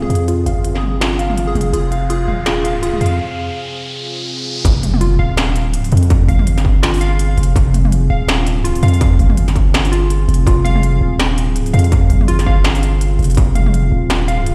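A long, sine-toned 808-style bass sits up front through this tense, spacious half-time drum and bass excerpt, each fast attack decaying into a deep, mellow tail. Around it, a moody ambient pad of detuned sawtooth layers holds dark chords with chorus, built-in reverb and sidechain pumping, while a warbly, lo-fi pluck plays arpeggios through lush chorus and dub echo, its filter sweeping during the opening build-up. A punchy, catchy unison lead with a moving notch and digital delay carries a short melody that ends at 3.0 seconds, as an electronic riser builds toward the drop. The industrial kit's clanging snare, crisp hats and toms have an overdriven bite and a swung feel, and at 4.6 seconds an impact lands as a distorted electronic kick joins for the drop. Light digital ambience surrounds the mix, which sounds as if it is playing on a big sound system in a bare stone room.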